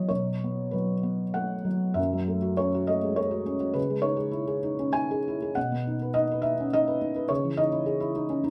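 A felt-muted upright piano plays alone through this short, intimate and melancholic cut from a longer neoclassical minimalist piece, its dark, thick-felt tone sitting up front in a small room with moderate reverb as it moves rubato in 3/4 at roughly 94-104 BPM, tuned to A4 = 439 Hz and spanning F#2 to G#5 over chords that pass from Bsus2 to F#m7 at 2.0 s, then through C#madd9 and B, returning to C#madd9 at 7.3 s.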